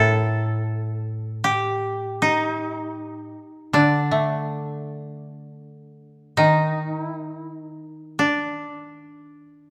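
A dry, woody koto played with fingerpicks carries an austere, calm melody between D4 and A4 in free time while a second up-front koto supports it in the low register from A2 to A3, both sounding for the full 9.7 seconds in this brief slice of traditional Japanese chamber music, tuned to A4 = 439 Hz and set in light reverb.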